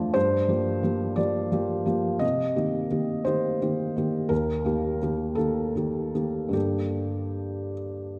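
Reflective and wistful, this brief neoclassical minimalist fragment, cut from a longer piece, drifts in a rubato 6/8 over a progression that moves from Gm7 through Cm7 and Eb to a closing Gmadd9 at 6.5 seconds. A lone felt-muted upright piano carries it all, its thick felt giving a soft, mellow, intimate tone that sits up front and spans Eb2 to Eb5. A wet concert-hall reverb with a 1.9-second tail surrounds the instrument with the air of a church or concert hall.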